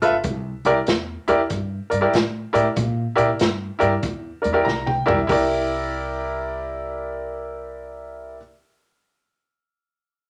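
A swung shuffle in four rolls along with a laid-back, rollicking feel in this electric blues excerpt, settled on a C7 chord. A bright grand piano carries the accompaniment up front, its brilliant, intimate tone ringing with long sustain and audible action noise. Underneath, a pizzicato upright bass on gut strings gives a woody, thumpy low end. A crunchy breakbeat kit of hi-hat, kick, snare and toms sounds saturated and gritty, with a tight kick, a medium-tuned snare and a rolled-off top. The piano plays a fill from 4.3 seconds, the drums add their own fill from 4.7 seconds, and the kit drops out at 5.5 seconds, leaving piano and bass in a wet studio reverb.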